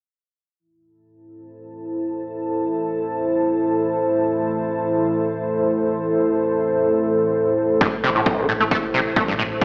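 A squelchy, screaming acid line in sawtooth tone, distorted and resonant with a filter sweep and dub echo, bursts in up front at 7.8 s alongside a punchy, tape-warm electronic kick, in this relentless, intense cut from a driving peak-time techno piece in free time over an A minor chord. Before them, two deep, dark ambient pads build the bed: a full-bodied high texture from 1.8 s and a moody low drone from 2.5 s, both detuned and chorused with their own reverb and sidechain pumping. A thick, saturated sub bass sits low in the background, pumping with its own sidechain, and the whole mix rings through a wet plate and a stone room, as if played on a big sound system in a bare space yet heard through a small speaker.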